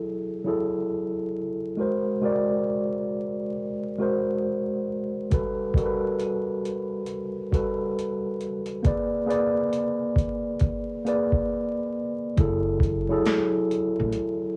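A mellow tine electric piano opens this hazy, nostalgic lo-fi hip hop excerpt at 68 BPM with a 16th-note swing, drifting through jazzy chords like F#m9 and Gmaj9 under a cassette tape effect, a low-pass filter and plate reverb. At 5.3 seconds a booming analog drum machine joins up front, its deep kick, crisp snare and metallic hats overdriven and roomy, and after a brief break a woody, thumpy pizzicato upright bass arrives at 12.4 seconds as the harmony returns to F#m9. The whole recording carries worn, warbling tape pitch drift and vinyl crackle.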